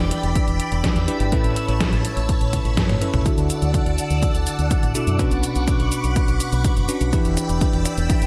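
Italo disco at 124 BPM in D major, romantic and playful, this excerpt opens with a swirling, vintage string machine holding sustained chords through ensemble chorus, phaser and shimmer reverb, while a bell-like tine electric piano plays stabs through a low-pass filter, delay and shimmer reverb, over a round, punchy fingered electric bass with an envelope filter. A detuned 8-bit digital drum machine enters at 0.1 seconds with an overdriven, sampler-style kit of cabasa, hi-hat, medium-tuned snare and toms in gated reverb, joined by a tape-warm analog kick from 0.4 seconds. A drum fill at 2.5 seconds leads into a new section at 3.3 seconds where a filter sweep runs across the electric piano, as the chords move from Em7 and Aadd9 to Dadd9 and Bmadd9 before returning to Em7.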